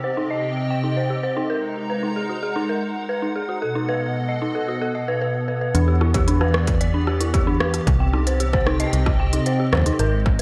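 IDM in E harmonic minor at 113 BPM, this short cut from a longer piece feels melancholic and intricate, moving through chords such as Cm, G#7sus2, B7 and Em7 before returning to Cm. From the opening, a hollow, flute-like pad holds sustained chords with a warbling, detuned ensemble chorus. Over it, a dark detuned synth bell spins eerie, inharmonic arpeggios, roughened by vintage 12-bit sampler grit and shaded by a low-pass filter, chorus and digital delay. At 5.7 seconds a metallic FM bass arrives up front with a fast, decaying attack, joined by an industrial drum kit of smooth hi-hats and rim clicks touched with reverb and delay. A distorted, tape-warm electronic kick drops in at 6.1 seconds, giving the second half a heavier pulse under a light reverb.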